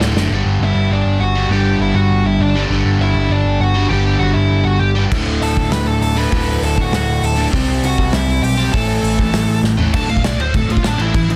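Rebellious and upbeat, this short punk rock excerpt charges along at 199 BPM in a straight 4/4, though the band settles into a half-time feel for most of its length. A biting, double-tracked overdriven guitar drives the riff up front from the first beat, joined by a growly, punchy overdriven bass that sounds bright and amped. The loose acoustic drum kit opens with a quick fill, drops out, then returns at 5.1 seconds with a punchy kick, medium-tuned snare, hi-hat, toms and dark cymbals in a pumping studio room, and another fill at 9.6 seconds leads into a short lead guitar solo at 9.9 seconds. Above it all, a dark, high-gain distorted lead guitar carries the melody, picked high over the chords that move from G5 through D, C and A5 before landing on D5. The sound is dry, dense and heavily limited in a modern master.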